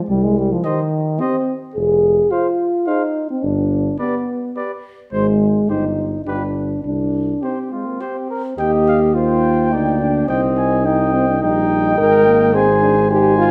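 Solemn and grave, this classical brass quintet excerpt moves at 106 BPM in 3/4, opening in C minor and turning to E-flat major at 8.6 seconds before settling back toward C minor and A-flat. Up-front euphonium and tuba start the piece at 0.1 seconds, the tuba anchoring the bass with light vibrato, and the trumpet enters at 0.6 seconds to carry the melody, joined by a soft-attack French horn and a distant, roomy flugelhorn as a second line. The mellow playing sits in a recital hall whose reverb lends the quintet a grave, spacious glow.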